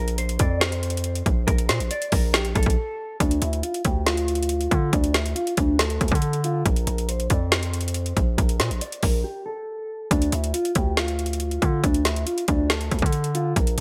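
This excerpt carries a bright 1980s-style digital sheen, with light reverb and digital ambience around an eerie, menacing trap beat in D minor at 139 BPM, felt in half-time. A mellow electric guitar carries the melody between D4 and D5, its dark, clean, fingered tone compressed and softened by a low-pass filter and a subtle chorus. Underneath, a distorted 808-style bass sits up front, heavy and aggressive, with a sine core, a noise layer, a fast attack and a decaying tail, moving between Bb1 and D3. The trap drum kit, also up front, pairs a hard-clipped kick and a woody snare with metallic hats, all carrying a tape-like glow. The harmony alternates between Bb5 and Dm, with brief breaks at 2.8 and 9.2 seconds before the chords return, and the music is cut from a longer piece.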